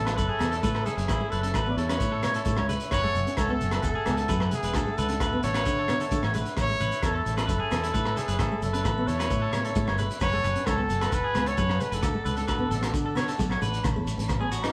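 A straight 4/4 groove from a crunchy, saturated breakbeat drum kit with a tight kick, hi-hat and rim click drives this sunny, joyful highlife guitar band, joined by ringing agogo bells and a grainy shekere in the background. Up front, a jazz-style trumpet sings the melody with vibrato until 13.4 seconds, over a round, foam-muted fingered bass, twangy arpeggios from an electric guitar at the edge of break-up, a fingerpicked steel-string acoustic guitar with fresh strings, and sustained chords from a reedy, overdriven vintage combo organ. The band plays live in a moderate stone room, cycling through Aadd9, F#madd9 and D in this short cut from a longer piece.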